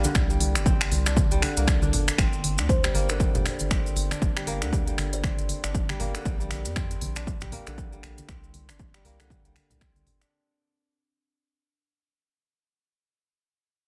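This afro house excerpt comes from the drop of a longer piece, hypnotic and spiritual in mood, with a swung 16th-note feel. A punchy, overdriven electronic kick leads the mix, its layered tone re-recorded in a large room, while the afro-pop drum kit adds finger snaps and smooth hi-hats, with soft clipping on its snare and studio reverb. A round, deep analog bass with a nasal filter pluck pumps under sidechain compression, and fingerpicked kora arpeggios ring crisply through delay and the same sidechain pumping. Soft-handed congas and grainy maracas sit close and dry in the background, and a woody, hollow kalimba melody appears from 2.7 to 5.3 seconds with its own delay. The harmony moves from G minor through Bbadd9 to C5 as the passage fades out from 2.2 seconds onward, in a dense, heavily limited master with small room ambience.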